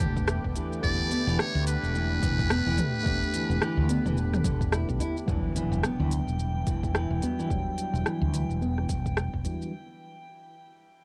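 A lo-fi cassette sound with light reverb wraps this earthy organic downtempo piece in E minor at 108 BPM, its 16ths swung over a Gadd9/E chord that moves to Em7 at 5.3 seconds. A raspy, buzzy trumpet with metal mute carries the growling, scooped melody through shimmer reverb and tape echo until 4.7 seconds, over a mellow tine electric piano, a smooth detuned analog pad, and drifting glassy harmonics. A round, dark fretless bass and crisp up-front electronic drums with hi-hat, rim click, shaker and toms sit with a deep background kick and a small udu, while a full-bodied fingerpicked nylon-string guitar adds arpeggios, and from 5.3 seconds a very quiet electronic impact arrives as filter sweeps move across the guitar and electric piano.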